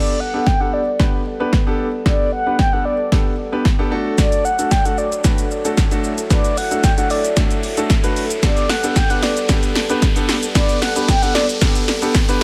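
A light reverb gives this carefree, euphoric dance-pop fragment a gentle sense of space, with the drums pushed up front. Set at 113 BPM in a straight 4/4, it plays as a build-up carried by a drum fill throughout, as the punchy analog drum machine enters at 0.5 s with tape-warm kick, snare, hi-hat and shaker. A mellow, horn-like synth lead sings the melody, its round sawtooth tone shaped by a soft attack, filter sweep, vibrato, chorus and delay. Beneath it, a clear grand piano plays intimate accompaniment with audible action noise and long sustain, while a dark French horn section holds distant, roomy chords with light vibrato; both piano and horns pump under sidechain compression. An electronic riser sits in the background from 3.1 s, as the harmony moves from Gadd9 to D and back to Gadd9.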